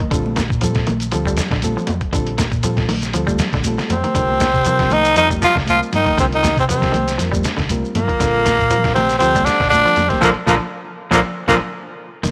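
A raspy, growling tenor saxophone carries the melody up front from 3.9 to 11.6 seconds, shadowed further back by a gritty, close-miked baritone saxophone on a second line, in this funky, defiant afrobeat excerpt at 119 BPM in 4/4 with a light swing on the sixteenths. Underneath, a muffled, compressed sampler-style drum kit with a thumpy kick and fat snare sits beside a round, punchy hollow-body bass, bright high-tuned congas, a grainy shekere, clean scooped guitar arpeggios and a reedy electric piano with fast tremolo, moving from Bbmaj9 to Cm9 and back. Near the close the band hits accents while the drums and electric piano play fills from 11.2 seconds, framed by a light studio reverb.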